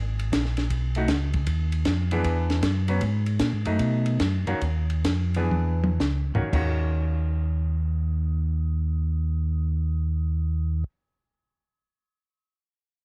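A mellow, round tonewheel organ with key click and a slow rotary speaker carries the bass line up front in this smoky, late-night soul jazz organ trio excerpt in Eb minor, swung in 4/4 at 109-156 BPM. A compact cocktail drum kit with a high-tuned snare, punchy kick and rolled-off top joins it, and as the tempo slows from 3.0 seconds the drums roll into a fill before stopping at 6.7 seconds. A dark, clean hollow-body guitar adds fingered accompaniment from 1.0 second, all set in a small room.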